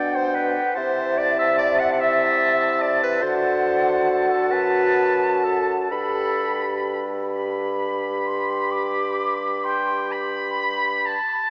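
Warm and lyrical, this excerpt from a slow romantic classical movement for wind quintet drifts in 12/8 at 41-50 BPM with a rubato feel in G major, moving from G/B through Am/C and D7 back to G. The airy, hollow flute carries the melody with vibrato above a bright, distant oboe second line, while a smooth-topped clarinet and a roomy French horn with light vibrato fill the accompaniment and a warm bassoon holds the bass. The five winds play together from the start in a vast, echoing cathedral space, heard through a small-speaker sound.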